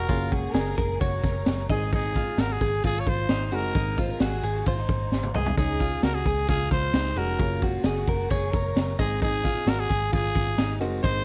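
A straight 4/4 pulse at 132 BPM drives this bright, nostalgic stretch of jangly indie pop in Ab mixolydian, with a gritty, boomy-kicked garage drum kit, a round, foam-muted picked bass and a clean, compressed electric guitar playing arpeggios through spring reverb and slapback echo, all moving over chords from Gbadd9 to Ab and Dbsus2. Up front, a raspy, growling trumpet carries the melody with vibrato and scooped notes, while a woody upright piano with audible action noise sits in the background and a lush violin section adds a smooth second line from 0.3 to 8.9 seconds. The drums break into a fill at 5.1 seconds, and the whole is captured in a dry, close 1970s-style studio sound, cut from a longer piece.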